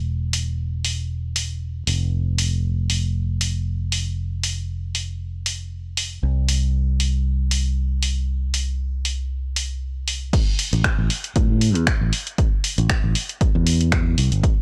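A swung 4/4 groove at 117 BPM drives this moody, deep house track in A minor, cut from a longer piece. A round, warm fingered electric bass pumps against the sidechain from the start, joined at 0.3 s by a dry analog drum machine playing finger snaps, hi-hat and crash cymbal. At the drop at 10.3 s, a punchy electronic kick arrives up front, all set in a digital ambience with a gritty, cassette-tape hardware character.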